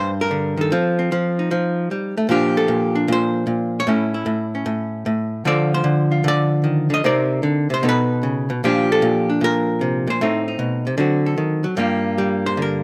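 Solo jazz with a smoky, late-night mood and a swung 4/4 feel, this short cut from a longer piece features a single archtop guitar, electric, clean and picked, with a dark hollow-body tone, placed up front by close, detailed miking with light reverb as it moves through minor-key changes and settles onto a Gm7 at 11.8 seconds.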